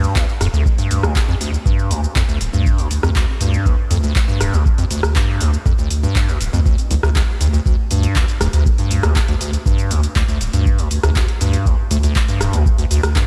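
A squelchy, resonant square-wave acid bass riff, bright, filter-swept, tube-driven and up front with subtle chorus, sidechain pumping and analog delay, opens this trippy, raw acid house excerpt in D minor at 120 BPM, alongside a thick, saturated sine sub bass that also pumps and a booming analog drum machine of metallic hi-hats, handclaps, rim clicks and shaker, with a deep, tape-warm electronic kick joining at 0.2 seconds, all set in light digital ambience.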